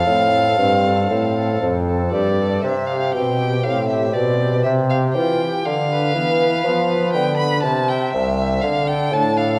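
Serene and dance-like, this excerpt from a baroque-style sonata movement in triple time sets a rich, focused solo violin, bowed with vibrato and placed up front, over continuo from a warm bassoon with light vibrato on the bass line. A pipe organ on a nasal cornet solo stop, with tremulant and romantic voicing, fills out the accompaniment close up. All three parts play throughout, bathed in a wet recital-hall reverb and colored by worn cassette tape with warbly pitch drift.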